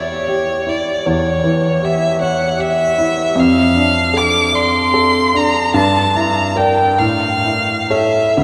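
In a slow, rubato 12/8 at 40-53 BPM counted in dotted quarters, this romantic classical duo in D minor unfolds with an elegiac, melancholic weight, tuned to A4 = 438 Hz. A single bowed violin carries the melody from C#5 to D6 with a rich, focused vibrato tone that sounds distant yet sits up front, while a clear grand piano accompanies from D2 to D5, intimate and polished, with long sustain and audible action noise. Both play from 0.0 to 8.4 seconds inside a wet cathedral reverb, moving from C#dim/E through Dm/F and Em7b5/G to an A chord at 7.0 seconds in this short excerpt of a longer piece.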